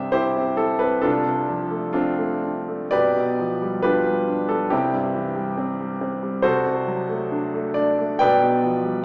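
Passionate and lyrical, this romantic character piece for solo piano unfolds in C major at a flexible 59-72 BPM in 2/4, its rubato phrasing moving through chords like Dm7/C, G7/B and D7/C over the 9 seconds cut from a longer work. The concert grand sits up front, clear and smooth with a deep bass and a vintage cast, ranging from B1 to G5. A wet recital hall reverb surrounds it, though the recording carries a small speaker sound.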